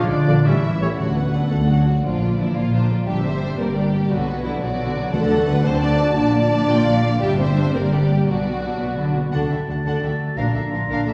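A 6/8 at 115 BPM drives this soaring, triumphant excerpt of a heroic adventure film score in D mixolydian, where a dark violin section with portamento sings the melody over a smooth second violin line, lush violas, soft-attack cellos and woody double basses, while distant horn chords, a ringing harp, brief trumpet stabs and trombones, clear oboe and clarinet, a hollow flute and hard-mallet timpani at 5.1 seconds color the sound within a reverberant scoring stage.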